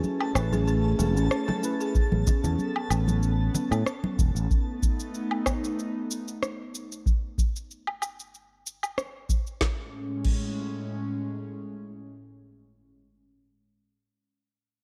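A lightly swung groove of deep electronic kick and a smooth R&B kit with woody snare, rim click, cabasa, woodblock and crash cymbal drives this smooth, sunny sunset chillout excerpt, where bright, damped congas, a growly fretless bass, a tremolo-laced tine electric piano, buzzing kalimba arpeggios, a twinkling granular shimmer and an airy, chorused pad that carries on alone until 12.9 s sit in a dark, lightly reverberant mix moving from Amaj7 to B7 and back.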